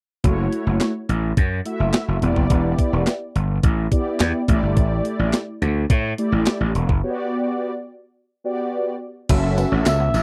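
Slick and danceable, this excerpt of early-eighties boogie funk at 106 BPM rides a thumpy, sampler-style drum machine and a growly, overdriven slap bass under round, detuned synth brass with chorus and phaser over chords from F#m7 to Gmaj7, with a break at 7.0 seconds before a jingly tambourine, a twangy clean guitar and a smooth portamento lead with vibrato and slapback echo enter in turn from 9.3 seconds in a dry, close studio sound.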